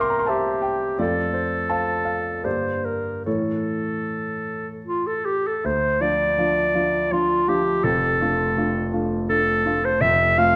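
In an unhurried 3/4 with a free, rubato pulse that moves between 72 and 87 BPM, this short romantic chamber piece for clarinet and grand piano unfolds in D minor with a solemn, elegiac mood. The clarinet carries the melody from start to finish in a classical style, singing up front between F4 and F5 with a warm tone. The concert grand piano accompanies throughout, also up front, reaching from a deep bass at F1 up to D6. The harmony travels from C7 through F, G minor and A before settling on D minor at 5.6 s, where a second section begins and later turns toward F at 10.0 s. A recital hall reverb surrounds the duo, and the dark production suits the music's grave, mournful character. The recording is cut from a longer piece.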